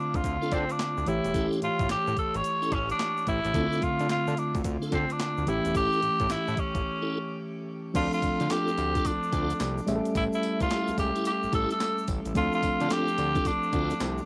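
Confident and slick, this new jack swing R&B cut moves at 109 BPM in 4/4 with a 64% sixteenth-note swing, circling between Dm7 and A7 in D minor. A breathy, raspy tenor saxophone sits up front with the pop-style melody, its gritty, punchy tone washed in shimmer reverb. Beneath it, a mellow tine electric piano plays the accompaniment through cassette tape coloring and shimmer reverb. A fat, detuned sawtooth analog bass with a saturated edge and a filter sweep anchors the low end. A clean 12-bit digital drum machine, overdriven and re-recorded in a small room, delivers a thumpy kick, medium-tuned snare, handclaps, hi-hat, tambourine and crash. A grainy tube shaker adds background percussion, while a piping, key-clicking tonewheel organ with fast rotary, chorus vibrato and light overdrive adds background stabs. A break arrives at 6.8 seconds before the second section begins at 7.9 seconds, and the whole excerpt carries the intimate feel of a home cassette recording in a modest room.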